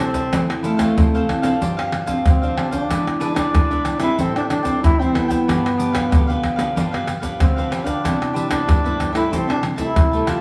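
A small room surrounds this short cut from a longer piece, heard from further back with a wet studio reverb lending it a soft halo. It is nostalgic, lively samba and choro at 93 BPM in a straight 4/4. A breathy, close-miked trombone carries the melody up front as an intimate, jazz-style solo, its whispered tone marked by light vibrato, soft attacks and scooped notes. Alongside it, a bright cavaquinho adds crisp picked accompaniment, while a dark, fingerpicked nylon-string guitar with fresh strings supplies classical-style support in the lower range. Maracas, pandeiro, tamborim and a deep surdo sit close and up front, and the harmony moves from Fmaj7 through G7sus4, E7/G#, Am7 and G7 to Cmaj7 and Am7/C, with every part playing from start to finish across the 10.4 seconds.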